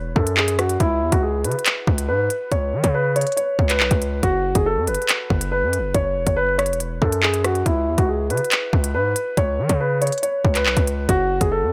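Light reverb and a digital ambience frame a produced, electronic mix with every instrument placed up front. This is a cold, menacing drill track in C# minor at 140 BPM in 4/4, moving with a half-time feel and tuned to A4 = 442 Hz, cut from a longer piece. A distorted 808-style bass opens at 0.0 s, heavy and aggressive, its saturated sine tone carrying a noise layer, a fast attack and a decaying tail across a range from E1 to E3. At 0.2 s a dark concert grand piano enters with a mellow, delay-treated melody between E4 and C#5 and a deep bass register. At the same moment the drill kit comes in with a hard-clipped kick, crisp hi-hats, handclaps and rim clicks. The harmony moves from Eadd9 to a C#7 lacking its third, then to a rootless Esus2 and back to C#7, before the chords fall away at 11.1 s.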